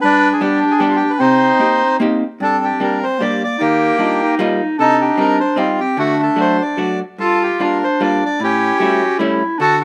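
A swung, rubato 3/4 pulse at 151 BPM drives this whirling, nostalgic musette waltz excerpt in G minor, where a reedy, bright, airy bandoneon sits up front carrying the melody with a slapback echo, a distant, roomy clarinet in classical style adds a second line, and a clean, picked electric hollow-body jazz guitar gives warm accompaniment through changes such as Cm7, Ebadd9, D and A7, captured dry in an open-air setting.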